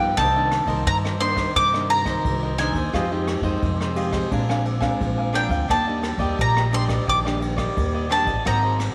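A moderate echo-chamber reverb gives this joyful, lively samba and choro cut a spacious glow, with a picked bowl-back mandolin carrying the melody up front, its double strings sounding high over the ensemble. A crisp cavaquinho and a full-bodied, fingerpicked nylon-string guitar supply the accompaniment through Cm9, Fm9, Bb9 and Ebmaj7, while a woody, dark pizzicato upright bass holds the low end. A distant jazz kit played with brushes enters at 0.2 s, adding ride cymbal, rim clicks and a boomy kick.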